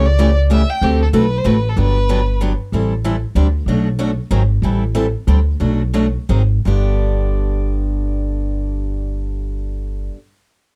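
A dark, lightly reverberant sound frames this playful, swinging jazz manouche cut in 3/4 at 160-189 BPM in G major, where a clear, focused violin sings its vibrato melody from a distance only until 2.4 s, a bright, up-front picked steel-string guitar carries the accompaniment through chords like Gmaj7, Am7 and Ab7, and a growly, thumpy pizzicato upright bass anchors the bottom while the tempo slows between 4.6 and 6.7 s.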